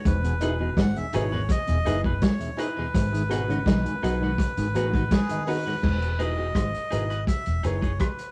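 Warm and uplifting, this roots reggae excerpt moves at 83 BPM in 4/4 with a straight feel, set in E major and cut from a longer piece. A reedy, breathy melodica carries the melody from the opening, its nasal, close-miked tone dry and full. Beneath it, a muted fingered electric bass lays down a round, punchy low end, while a vintage drum kit with a tight kick, medium-tuned snare, rim clicks, hi-hat and dark crash cymbals sits forward with a muffled, rolled-off top. A muted clav plays stringy arpeggios through an auto-wah, a mellow tonewheel organ with key click, slow rotary speaker and dub echo supplies accompaniment until 5.8 seconds, and a woody upright piano adds stabs alongside a clean, picked electric guitar bathed in spring reverb, both tucked into the background. The harmony moves from Emaj7 to G#m7 at 2.9 seconds and back to Emaj7 as a new section begins, all captured as a rough rehearsal-room recording with a small room's reverb and tape saturation.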